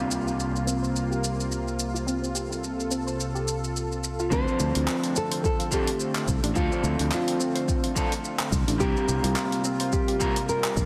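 A swung sixteenth-note groove at 107 BPM in 4/4 drives this smooth, wistful sunset chillout excerpt in D minor, built from a deep house kit of handclaps, hi-hat and shaker with a gently clipped snare and a tape-warm, small-room character. Over the opening seconds a dark, slightly broken-up electric guitar with tape echo plays accompaniment. A lush, detuned sawtooth pad holds sustained chords on chorus, and a soft, round pluck tucked in the background spins arpeggios through its own chorus and tape echo while a filter sweep moves across it. The harmony rests on C7sus4 before settling onto Dm7 at 4.3 seconds. At that point a deep layered electronic kick arrives with a growly, bright fretless bass, and a full-bodied nylon-string guitar takes the melody, thumb-plucked with audible finger squeak and trailed by digital delay. A moderate hall reverb and a dense, heavily limited modern master give the whole a polished sheen as the chords return to C7sus4 at 8.8 seconds.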